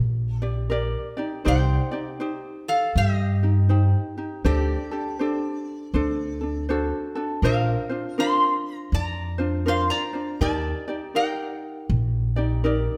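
A metal-body resonator slide guitar with fingerpicks carries a bright, nasal melody over mellow fingerpicked ukulele and a woody, thumpy pizzicato upright bass on gut strings, all up front in a relaxed, dreamy Hawaiian excerpt at a swung 80 BPM that moves from Ebmaj7 through Cmadd9, D7sus4, D7 and Bbadd9 back to Ebmaj7, set in a moderate recital-hall reverb.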